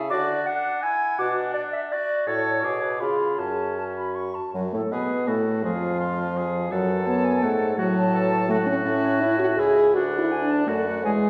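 Classical-period wind quintet writing, lively and spirited, moves quickly at 166 BPM in 3/4 with a rubato feel in F# minor. The concert flute carries the melody with a pure, straight, tongued tone. The oboe adds a soft-edged second line with light vibrato, and the mellow French horn sits up front in the accompaniment. A dark clarinet sits in the background and a clear bassoon anchors the bass. Heard from further back in a wet recital hall, this passage cut from a longer piece shifts from D and Bm through a C#7 into F#m, then touches a brief Fm near 5.6 seconds before settling on A and D.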